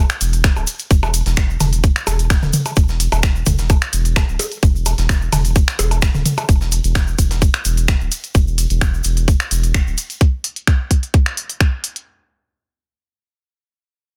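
A straight 4/4 pulse at 129 BPM drives this cool, sparse minimal techno drop, cut from a longer piece, where a tight, layered, overdriven electronic kick sits up front over a deep, thick, saturated sine sub bass with sidechain pumping that stops at 10.0 s. Around them are a clicky, tape-warm kit of finger snaps and hi-hats with soft clipping on the snare, and up-front electronic blips and toms with overdrive and tape echo that drop out at 6.5 s. A gritty, very quiet sampler-style breakbeat kit of hi-hat and high-tuned snare and a grainy, bright egg shaker in the distant background fill out a dense, heavily limited mix with little reverb.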